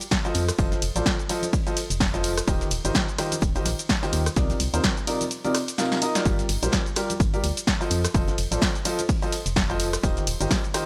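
A punchy analog drum machine with hi-hat, ride cymbal, rim click, shaker and snare opens this bittersweet, energetic piano house cut at 127 BPM with a swung 16th feel, alongside very quiet tambourine and congas. It is soon joined by a dark brushed vintage kit and an overdriven electronic kick that drops out from 5.3 to 6.3 seconds, with a drum fill from 5.8 to 6.3 seconds. Up front, a clear concert grand piano plays a riff with sidechain pumping and tape echo over a hollow, organ-like FM bass that also pumps, as the chords move through F7, Eb69, Cm11 and Gm7. The sound is dry and gritty in a small room ambience, cut from a longer piece.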